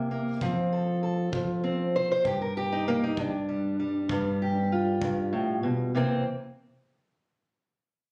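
A slow, laid-back 12/8 pulse at 65 beats per minute, with a straight feel, drives this gritty excerpt of acoustic country blues, tuned slightly sharp to A4 = 441 Hz. A fingerpicked steel-string acoustic guitar carries the melody up front, its dark, boxy parlour tone ranging from G2 to C5 over an F chord before moving to G7(no3) at 2.2 seconds. Behind it, a tight kick drum played with brushes sits distant and roomy in a small space, its rolled-off top keeping it soft under the guitar. The kick stops at 5.2 seconds, and the guitar rings on alone until 6.2 seconds as the harmony falls away to an unaccompanied, chordless stretch. Captured on a phone in the room, the sound is compressed and dressed in a wet studio reverb with a short decay, which gives the duo an intimate, lo-fi character.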